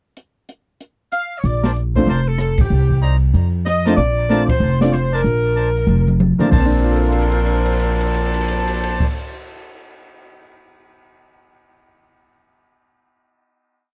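A bright saxophone section carries the motif-based melody in tight four-part block harmony with vibrato and a soft attack, leading this short, joyful big band swing piece in Bb major at 189 BPM. An upright bass enters at 1.4 seconds with a woody, thumpy two-feel, joined by a clear trumpet section punching syncopated stabs through tape echo and a brilliant upright piano comping in rootless voicings. An open jazz drum kit with a dark, smooth tone, boomy kick and time on the hi-hat frames it all, adding fills leading into and across the final chord, which rings to 9.1 seconds in a dry, close 1970s-style studio sound.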